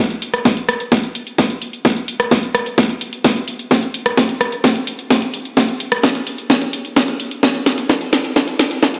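Powerful and euphoric, this 129 BPM festival progressive house excerpt in straight 4/4 is a drums-only build-up and fill: an up-front house kit of hi-hat, rim click and cracking snare, re-recorded in a large room, runs from 0.1 to 9.0 seconds, while a punchy, tape-warm, high-pass-filtered electronic kick joins at 0.5 seconds, all set in a lush hall reverb.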